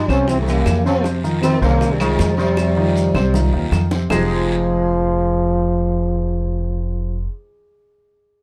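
A straight 4/4 Afro-Cuban jazz groove of low-tuned bongos, woody claves and grainy maracas in the background, together with a raspy guiro, runs until 4.2 seconds, with a drum fill from 2.6 seconds, beneath a sultry, sophisticated excerpt led by an intimate, breathy trombone with light vibrato up front, a bright, buzzing plectrum-plucked sitar second line, warm baby grand piano accompaniment and a thumpy pizzicato upright bass, set in a dark production with light reverb.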